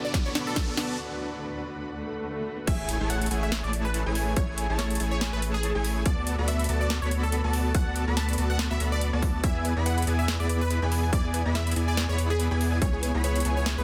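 This euphoric, playful future bass passage, cut from a longer piece, opens on a build-up: a lush, bright unison pluck carries the melody through phaser and dub echo, a dark, mellow concert grand piano sits in the background with tape echo, and a shimmering, ethereal pad holds sustained chords in chorus and its own reverb. A huge, detuned supersaw plays a compressed riff, while an electronic riser and a brief drum fill from the overdriven trap kit and hard-clipped kick push toward a break and a rising swell. At 2.7 seconds the drop lands with an impact: the piano and pad fall away, a deep, saturated sine sub bass arrives up front, and an airy, dreamy lead adds soft, gliding arpeggios with chorus and vibrato in the background. The half-time groove, with its swung sixteenths, pairs the up-front kick with the kit's sharp snare and metallic hats, and nearly every melodic part pumps against the kick through sidechain compression. 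From 9.6 seconds a second, full-bodied unison pluck adds short, decaying arpeggios with tape echo. The mix is dry, dense and heavily limited.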